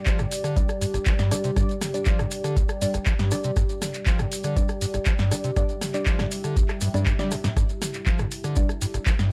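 A lightly reverberant, raw and playful acid house piece at 120 BPM, where an up-front overdriven electronic kick and a punchy, tape-warm analog drum machine of handclaps, hi-hat, rim click, snare and toms drive beneath a squelchy, resonant acid bass riff with filter sweeps and subtle chorus, while a moody sawtooth pad holds sustained chords that pump under sidechain with chorus and phaser, soft nasal chord stabs enter at 0.6 seconds through chorus and digital delay, close grainy maracas rustle throughout, and a drum fill arrives at 6.8 seconds.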